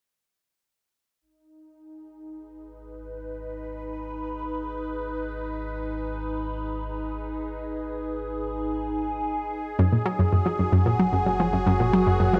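A phased analog pad and a round, deep analog bass fade in together at 1.2 s, the pad's detuned sawtooth chords swirling and evolving through phaser and chorus over G# minor while the dark bass sustains underneath. This is cosmic, hypnotic, sequencer-driven space music at 112 BPM in 4/4, cut from a longer piece and bathed in a huge, wet reverb. At 9.8 s the harmony moves to F#add9 and a bright, up-front analog pluck enters with a fast-attack riff, its detuned tone sent through chorus and delay.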